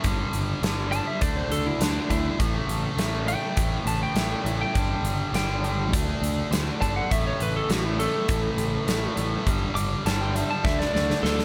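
A biting, double-tracked overdriven guitar riff sits up front in this gritty, raunchy blues-rock and southern-rock cut, driven by a round, fuzzy picked electric bass and a huge, punchy arena drum kit with a pumping hall sound, while a slightly broken-up, twangy, compressed lead guitar melody enters at 0.9 seconds over a cycling G5, D5 and A5 power-chord riff, until a drum fill at 10.6 seconds plays over a rootless Gsus2.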